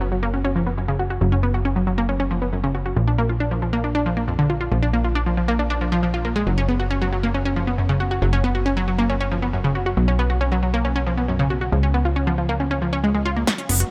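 A lush, detuned unison pluck leads this uplifting trance excerpt, spinning arpeggios under a filter sweep with sidechain pumping and dub echo from the start, alongside a punchy, funky analog bass with a ring-modulated bite in F# major at 137 BPM. The euphoric passage moves through F#5, A#, B5 and C# chords in light digital ambience. At 13.5 seconds an overdriven big-room drum fill bursts in with a punchy, up-front snare, crisp hats and a punchy high-passed kick.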